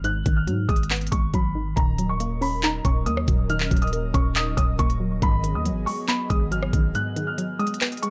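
A dark, warm digital ambience surrounds this brooding, melancholic trap fragment, cut from a longer hip hop piece and set in a half-time feel. Up front, an electronic trap kit of knocking kick, crisp hi-hats, handclaps and rim clicks drives the groove, while a growling, buzzy 808-style bass with a fast, decaying attack sits beneath it until it drops out at 6.9 seconds for a short break. A mellow, boxy grand piano carries the high melody through a low-pass filter and tape echo, and a warbling, dusty lo-fi pluck with chorus and a filter sweep supplies the accompaniment. At 1.8 seconds a soft, breathy pad with a noise layer and a moving notch slowly fades in, holding airy sustained chords with a long release. The harmony shifts from Abm7 to Ebm7 and back to Abm7, keeping the mood somber and worn.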